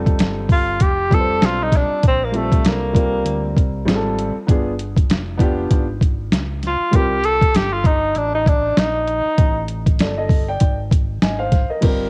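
Swung sixteenths drive this cool, nocturnal jazz-hop piece, where a gritty, overdriven boom bap sampler-style kit with a thumpy kick sits up front over a round, deep fingered electric bass and a dark, mellow baby grand piano, while a breathy tenor saxophone solos from 0.5 to 9.7 seconds with subtone, vibrato and scooped notes, its whispered, intimate tone carried on analog delay in a lightly reverberant home cassette recording.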